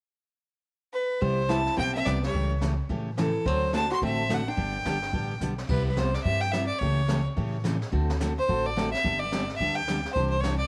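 A clear, biting fiddle leads this down-home, playful western swing excerpt, played by one player up front with light vibrato and an airy bow, entering at 0.9 seconds and carrying the melody with intense energy. Beneath it, a bright, full-bodied dreadnought acoustic guitar picks out the accompaniment while a woody upright bass with gut strings gives a thumpy pizzicato foundation. A dark, clean hollow-body electric archtop, miked and compressed, adds a picked second line from 1.2 seconds until it drops out at 5.4 seconds, just as the drums play a fill. The drum kit, played with brushes, sits distant and roomy, with dark cymbals, a high-tuned snare and a boomy kick driving the swung rhythm. Light studio reverb frames the band as the harmony cycles through Cmaj7, A7/C#, D7 and G before settling on Cadd9 near the close.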